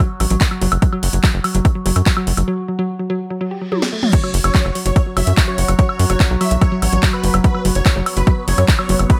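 A punchy electronic kick sits up front in this intense, driving psychedelic trance excerpt at 145 BPM in straight 4/4. Around it, a layered techno kit adds a cracking snare, metallic hats, handclaps, toms, woodblock and crash, while a tight sequencer bass built from sawtooth and square waves supplies a plucky, fast-decaying low line. A woody, wave-folded pluck carries the riff from the opening moment, its dark, warbling tone colored by chorus, 12-bit sampler grit, tape echo and sidechain pumping. Behind it, an overtone-sweeping drone holds a rootless Esus2 in the background with a resonant, slowly blooming sound, pumping alongside the pluck. A break arrives at 2.5 seconds, and a reverse cymbal at 3.6 seconds and a drum fill at 3.7 seconds lead into the drop at 4.1 seconds. There, a huge, thick supersaw takes the melody, compressed and detuned with vibrato, phaser and tape echo, all in a light digital ambience.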